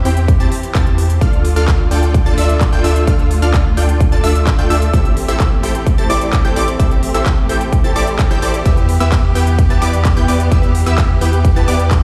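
A dark chamber string section opens this excerpt of anthemic, triumphant festival progressive house at 129 BPM, its bowed ensemble chords smooth and even with vibrato. Alongside it from the first moment come a punchy, detuned supersaw stab riff with a filter-pluck attack and a deep, thick, saturated sub bass, while a lush, bright unison pluck traces high arpeggios in the background through subtle chorus and digital delay. The big-room dance kit enters at 0.1 seconds with crisp hats, handclaps and ride cymbal carrying a tape-warm edge, and a layered electronic kick lands up front at 0.3 seconds. Sidechain pumping breathes through the strings, pluck, stab and bass. The harmony moves from C/E through Dm and Am7 to Em, and the mix sounds as if played on a big sound system in a bare stone room.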